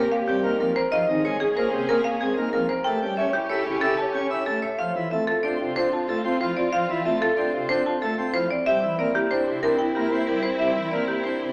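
A dark, woody marimba sits up front and carries the melody in this hypnotic, meditative piece of minimalist classical pattern music, moving at 186 BPM in a straight 6/4. Beneath it, a full, brilliant pipe organ plenum with baroque voicing and audible chiff lays down the accompaniment, while a warm baby grand piano spins intimate arpeggios with its action noise audible. A lush symphonic violin section holds smooth, even sustained chords with vibrato, and a clear French horn, set in the background, traces a second line in a classical style. The harmony drifts through Eb9, Bbm9 and A7 before settling into D minor at 4.8 s, where it moves from Dm7 to C7. All five parts play from start to finish of this short excerpt, which is cut from a longer piece and bathed in a large studio reverb.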